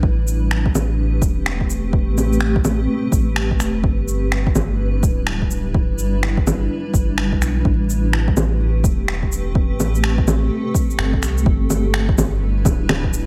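Vinyl crackle and a light reverb frame this short cut from a longer future garage piece, which sits in A minor at 126 BPM in 4/4 with a 64% swing on the sixteenths. The mood is wistful and rainy, carried by a granular cloud pad whose blurred, evolving, detuned chords hold in a bright, full-bodied haze with slow attack, long release and built-in reverb, pumping against a sidechain. Beneath it, a soft dub sub bass sits up front, deep and round, with a fast attack and sustained notes that also pump with the sidechain. A punchy, layered, overdriven electronic kick drives the groove until 13.1 s, while electronic shaker, finger snaps and bongos, also overdriven and re-recorded in a large room, join at 0.3 s and sit close to the listener. The harmony moves between Am9 and G6, closing on G6 from 11.5 s as the piece shifts into its final section.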